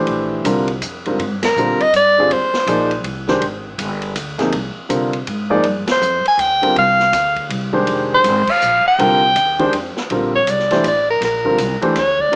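A concert grand piano with a deep bass end and a woody, thumpy pizzicato upright bass open this hypnotic, searching modal jazz waltz at 162 BPM in Ab lydian, joined at once by an open acoustic drum kit with dark cymbals and a boomy kick. An up-front soprano saxophone with light vibrato, subtone and scooped notes carries the melody from 1.4 seconds, falls silent, then returns at 5.9 seconds and moves into a solo that runs to the close, while band accents land at 1.4, 5.8 and 8.4 seconds within the swung 3/4 feel. A large studio reverb lends space to a small-speaker sound, and the clip is cut from a longer piece.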